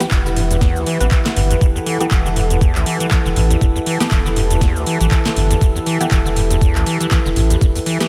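A lightly reverberant, pumping mix carries this trippy, driving acid house excerpt in E minor at 120 BPM with a swung 16th feel, where a squelchy, resonant acid bass riff rides a thick saturated sub bass and a thumpy overdriven kick, while an analog drum machine adds crisp snare, handclaps, metallic hi-hats and cabasa, a vintage wave-folded pad sustains Em chords, a muted phased dub chord stab sits in the background, and a detuned, lo-fi tape-like pad warbles nostalgically behind it all.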